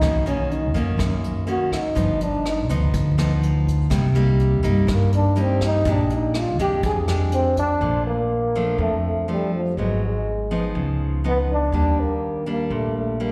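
Relaxed and romantic, this bossa nova excerpt moves at 123 BPM in a straight 4/4, cut from a longer piece and heard as a live gig through the venue's PA with recital hall reverb and light small-room ambience. A breathy trombone carries the melody, mellow and whispered with light vibrato and a soft attack, sounding intimate yet distant and roomy while sitting up front, its solo running through the opening section to 7.8 seconds with a slapback echo. A fingerpicked nylon-string guitar accompanies throughout, full-bodied with a deep classical tone and audible finger squeak, also touched by slapback echo. The upright bass is played pizzicato on steel strings with a woody character, anchoring the low end. A jazz brush drum kit adds hi-hat, rim click and a boomy kick in a natural small-room sound before dropping out at 7.7 seconds, leaving the second section to trombone, guitar and bass as the harmony moves from Bmaj9 and G7b13 toward Bbmaj7, Abm7, Db9 and Ebmaj7.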